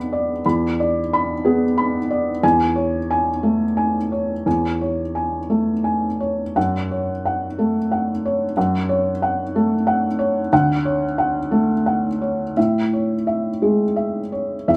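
A felt-muted upright piano sits up front in a moderate studio reverb, captured live in one room, with its soft, boxy tone and audible action noise giving the sound a close, intimate quality. This short neoclassical minimalist piece in A major moves in a rubato 3/4, drifting between roughly 83 and 94 BPM, and the mood is tender and intimate. The piano plays alone throughout its 14.8 seconds, ranging from D2 up to B5 with a mellow, cushioned touch. The harmony opens on E7, settles onto Amaj7/E at 2.4 seconds, and then passes through F#m and Dmaj7 before arriving on Amaj7 at 12.6 seconds. Cut from a longer work, the passage feels like a private, gently unfolding thought.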